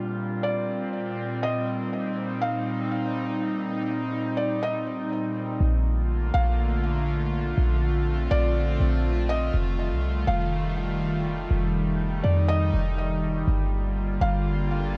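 An airy, breathy pad with chorus carries this blissful, floating cloud-rap hip hop piece at 122 BPM in half-time Bb major, joined at 0.4 seconds by a mellow, felt-muted upright piano melody with audible action noise and delay, while a deep, boomy 808-style bass enters up front at 5.6 seconds and the whole passage, cut from a longer piece, sits in light studio reverb under a worn cassette warble.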